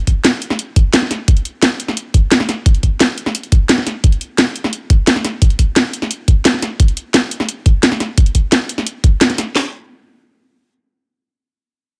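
Two layered electronic drum and bass kits open the excerpt together, one driving handclaps, a knocking kick and a cracking snare while the other adds bright hi-hats and its own snare. This is dark, technical drum and bass in a straight 4/4, futuristic and aggressive, with both kits up front and dry, re-recorded in a small room. The drums play until about 9.6 seconds, when a brief new section begins.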